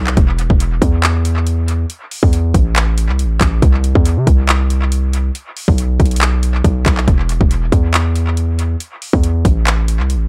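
Hip hop in a trap style, this brooding, hard-hitting excerpt moves at 139 BPM in 4/4 with a half-time feel. A heavy 808-style bass anchors the low end from the start, its sine tone layered with noise for a punchy, fast attack that decays, sitting up front and ranging from E1 to C3. An electronic, produced trap drum kit, also up front, brings handclaps, metallic hi-hats and a hard-clipped kick, with dub echo trailing off the drums. The digital ambience yields an echo-heavy mix. At 7.1 s the piece shifts into a new section that carries on until the cut at 10.3 s.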